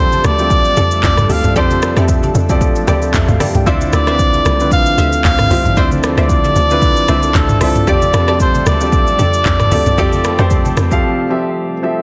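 Amapiano with a soulful, late-night mood and a gentle swing in its groove. A soft, veiled, cup-muted trumpet carries the jazz-style melody up front, treated with a digital delay, and it finishes at 11.5 seconds. A grand piano with short sustain plays the accompaniment, while a lush, thick, detuned unison pad with chorus and sidechain pumping holds sustained chords in the background. A hollow, bouncy log drum bass anchors the low end, alongside an up-front electronic kit with a deep kick, crisp hats, handclaps, rim clicks, shaker and toms, recorded in a large room. Very quiet, close, dry congas add bright percussion, and a punchy, warbling vintage chord stab treated with chorus, phaser and delay sits behind the other parts from 0.8 seconds. The bass and drums stop at 11.0 seconds, leaving a brief break in which the piano and pad continue under the trumpet's closing moments, in a dense, heavily limited modern mix.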